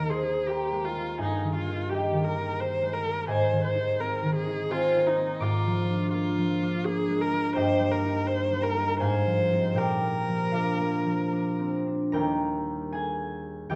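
Tender and serene, this romantic classical duo in 3/4 drifts with rubato between 70 and 87 BPM in Eb major, an expressive bowed viola singing the melody with vibrato and portamento from Eb4 to C5 until 11.7 seconds over a ringing, fingerpicked concert harp that spans Eb2 to D6 and carries on alone to 13.8 seconds, both up front in a dark production bathed in recital hall reverb, the passage cut from a longer piece.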